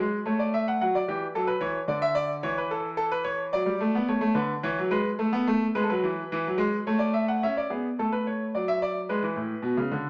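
A clear concert grand piano plays alone throughout this short classical passage, a baroque-style two-part invention in 3/4 with an elegant, lively character. The piano sits up front with an open tone and a deep bass, spanning A2 to F#5, while a wet stone room's reverb surrounds it. Harmonies move through A, Dsus2, D/F# and E before a new section begins at 7.4 seconds and closes on a G#dim chord at 9.1 seconds, as this fragment is cut from a longer piece.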